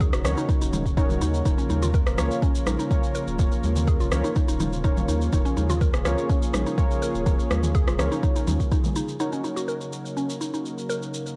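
An up-front electronic kick with a deep, overdriven punch opens this hypnotic afro house excerpt alongside an overdriven drum kit of rim click, shaker and toms, both re-recorded in a small room, while ringing congas played with soft hands enter in the background at 0.2 seconds. Underneath, a round analog bass with a dark, sine-like tone sustains its low notes and pumps against the kick. A woody, FM-style mallet pluck spins arpeggios colored by chorus, cassette tape and tape echo, as mellow sawtooth keys punctuate with detuned stabs run through a low-pass filter sweep, chorus and echo. A smooth, detuned analog pad holds sustained chords with a soft attack and long release, also breathing with sidechain pumping. The bass drops out at 8.6 seconds and the kick and congas soon follow, leaving the pad, keys, pluck and kit to carry a new section from 9.2 seconds, all captured with a dry, gritty hardware sound and a warm, hypnotic mood.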